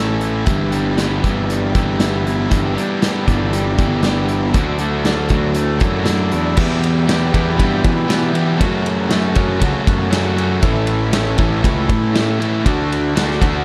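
Restless and moody, this indie rock excerpt moves at 118 BPM in a straight 4/4, centred on E dorian and cut from a longer piece. A bright, fuzzed-out guitar treated with distortion, subtle chorus and tape echo plays a riff alongside an overdriven electric guitar with a warm, compressed edge, both starting at 0 seconds. Underneath, a growly fuzz bass with overdrive sits slightly louder, while a loose, roomy drum kit with a punchy kick and medium-tuned snare works through hi-hat, ride and crash. At 2.5 seconds a buzzy vintage combo organ with light vibrato slips in very quietly, holding sustained chords high above the band. The harmony drifts from Em/G through G6 and Dadd9 before a second section at 6.6 seconds moves through Emadd9, F#m and Aadd9, all framed by light reverb in a dark production.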